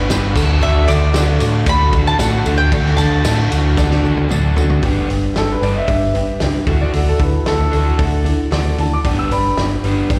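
Folk rock and heartland rock at 114 BPM in G major, hopeful and jangly, cut from a longer live gig heard through the venue's PA with recital hall reverb, where a shimmering, octave-doubled twelve-string acoustic guitar and a crunchy, double-tracked overdriven guitar riff, both with slapback echo, ride over a dark, round, up-front picked electric bass, a loose indie drum kit with a fat snare and tight kick, and a jingly tambourine in the background, as a mandolin with doubled strings carries the melody from 0.6 s until a drum fill leads at 4.8 s into a woody, intimate upright piano solo with audible action noise and long sustain.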